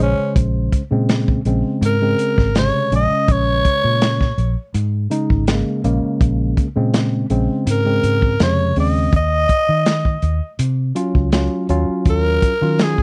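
A raspy, growling tenor saxophone carries the melody with light vibrato in this brooding, smoky soul-blues fragment, cut from a longer piece. Beneath it, a worn, slightly out-of-tune electric piano with light overdrive holds down the chords while a dark, round, foam-muted fingered bass pushes punchy low notes, and a saturated breakbeat kit with a tight kick and rolled-off top comes in at 0.4 s. The harmony sits on Bbm9 before shifting to Ebm9 at 9.1 s, all captured in a dry, close 1970s-style studio sound.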